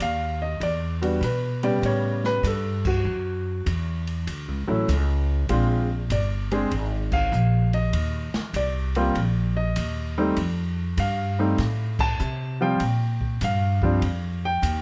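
Light reverb and a softened top end give this short cut from a longer jazz piano trio performance a close, warm feel, swinging at 98 BPM in 4/4 in B-flat major. The up-front grand piano carries the melody with audible action noise and a touch of plate reverb, over a woody, growly pizzicato upright bass and a dark, smooth drum kit with a boomy kick and dark cymbals sitting further back. The chords move from Em7 through A9, a rootless Dmaj9 and Bb9 toward F, and the trio plays band accents at 2.7, 7.0 and 11.9 seconds.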